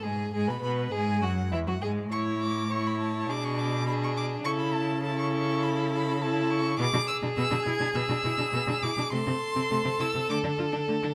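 A dark-toned first violin carries the melody high above the ensemble, its vibrato and portamento giving the line an expressive, urgent edge until it drops out at 10.4 seconds. This is a quick classical-period movement for string quartet, cut from a longer piece, with a dramatic, pressing mood in a straight 4/4 feel. Beneath it, the second violin plays a focused, smooth-topped second line while the viola fills in the accompaniment with a close, concentrated sound, both players using vibrato. The cello anchors the bass, sitting up front with a soft attack, its own sliding portamento and expressive vibrato lending the low end a rich, singing weight. The harmony moves through dominant and diminished colours before darkening toward a minor chord at 9.1 seconds, with the lower three strings continuing to the close at 11.1 seconds. A moderate recital-hall reverb surrounds the quartet with a natural sense of space.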